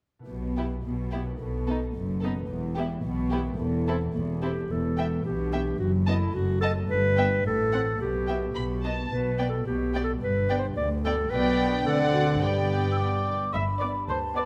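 A playful, sneaky cinematic cue at 109 BPM in 2/4, moving from E minor to G major at 9.1 s, where a ringing, thumb-plucked concert harp arpeggiates in the background beneath dark, intimate sul tasto strings, with cellos and double basses on the bass, violas accompanying, one violin section carrying the melody and a pure, floating violin section on a second line, while a solo clarinet enters up front at 4.4 s and a mellow, hollow concert flute joins at 12.9 s, all set in a moderate scoring-stage reverb.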